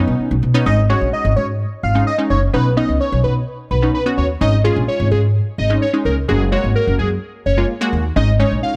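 A light studio reverb frames this summery, euphoric dance-pop excerpt at 128 BPM, where a woody pizzicato upright bass sits up front beneath a punchy, bright polysynth comp with chorus, while a fat analog lead with vibrato and tape echo carries the melody from 0.7 seconds over chords moving between Cbadd9, Absus4 and Gbadd9.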